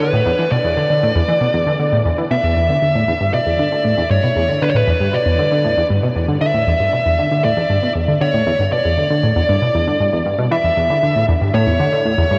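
A tight, driving synth riff of detuned sawtooth and pulse waves, with a filter pluck on a fast attack, chorus and tape echo, starts together with a dark, overdriven electric lead guitar whose picked melody is soaked in shimmer reverb and tape echo. This cosmic, mysterious slice of sequencer-driven space music sits on a single Em7 chord for its 12.4 seconds, both parts held up front. A huge, wet reverb tail and a worn, warbling cassette quality with drifting pitch and dulled highs give the whole excerpt a hazy, aged sheen.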